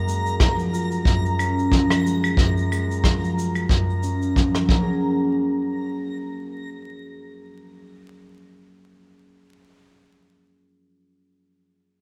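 Swung sixteenths in 4/4 carry this pastoral folktronica fragment, where a punchy, brushed kick drum and a warm, rolled-off shaker, rim click and claves part fall away by 4.8 s, a bright, detuned, reversed granular texture floats in its own reverb above until 5.0 s, and an up-front, thumb-plucked concert harp rings out in arpeggios through gritty 12-bit sampler colour and digital delay, carrying on alone to 10.9 s, within a rough home-demo mix flecked with vinyl crackle and small-room ambience.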